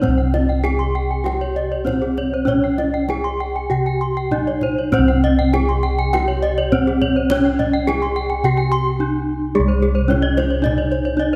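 A straight 4/4 pulse moving between 98 and 110 BPM drives this ceremonial Balinese gamelan passage in C pelog, tuned to A4 = 441 Hz, which is cut from a longer piece. Up front, a bronze metallophone struck with a wooden mallet carries the melody in a close, dry and full sound, its paired tuning producing shimmering beats. Two further metallophones played with horn mallets spin bright, ringing arpeggios above it, with the same beating shimmer. The one with the lower, narrower range is close-miked, dry and full. Bossed gongs, also up front, supply a round, mellow bass under padded beaters. A kendang played with soft hands sits tight and distant in the background as though in a large room, the ensemble is bathed in a moderate scoring-stage reverb of 2.1 seconds, and a new section arrives at 9.6 seconds.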